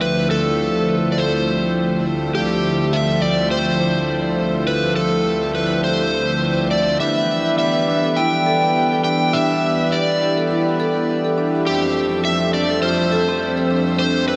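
Soaked in a cathedral-sized reverb that gives the whole mix a dreamy haze, this hypnotic, mystical cut from a longer organic downtempo piece moves at 103 BPM in D dorian, with an up-front overdriven slide guitar singing the melody over a reedy, breathing hand-pumped harmonium with tape echo, an airy, detuned pad with chorus and a filter sweep holding sustained chords through Dm11, Em7 and Fmaj9, a barely audible cabasa, and a marimba with medium hard mallets joining at 7.0 seconds with echoing arpeggios.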